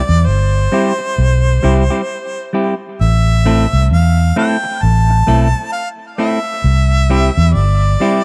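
A slow roots reggae groove at 66 BPM in 4/4, swung lightly on the sixteenths, settles into a meditative, laid-back mood in A minor, moving from C to Am and back to C across this short cut from a longer piece. A round, punchy, foam-muted electric bass sits up front beneath a clear, close-miked harmonica that carries the melody with vibrato and tape echo, while a dark, hollow-bodied semi-hollow guitar joins at 0.7 seconds with clean accompaniment colored by spring reverb and tape echo. The sound is dry and close, a 1970s-style studio recording with only light reverb.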